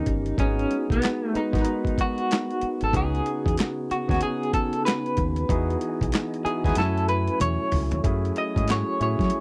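A dark, slightly broken-up electric guitar through a small old amp carries the melody up front with tremolo, playing a clean solo from the start until 8.0 seconds in this sultry, soulful neo-soul fragment at 94 BPM in F# dorian, swung on the 16ths and moving through G#m7, C#9sus4, Emaj9 and F#m9. A barky, lightly overdriven tine electric piano and a very quiet, flute-like tonewheel organ with key click and fast rotary speaker fill in the harmony, while a round, deep dub fingered bass sits beneath. A gritty, compressed boom bap sampler-style kit with a thumpy kick, handclaps and toms drives the groove and plays a fill from 6.8 seconds, all in a dry, close 1970s-style studio sound.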